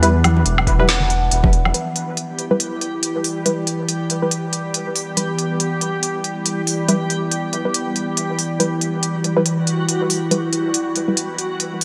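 A rumbling, detuned saw bass sounds from the very start of this brooding deep dubstep excerpt in E minor at 140 BPM with a swung half-time feel, sounding beside a deep layered electronic kick, soft-handed congas and a drum kit with a woody snare and smooth hats in gated reverb, before dropping out at 1.7 s to leave a resonant, evolving drone with moving overtones, muted filtered chord stabs in dub echo, and a reversed, dreamy granular texture that swells in from 2.3 s, all set in a lush hall reverb with bright 1980s-style digital sheen.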